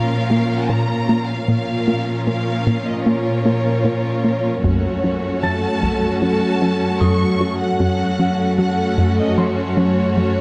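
A barely audible electronic impact opens this brooding, relentless 76 BPM hybrid orchestral and electronic film cue, where lush bowed violins carry an expressive vibrato melody over a focused second violin line, smooth background violas, cellos on the bass, a glassy chorused FM pad, a very quiet woody wave-folded pluck arpeggio, a punchy analog bass riff and a bright piano texture with digital delay, before hard-stick taiko drums strike from 4.6 to 6.2 seconds as the harmony shifts to Gb minor, all in a dark production with a scoring stage reverb.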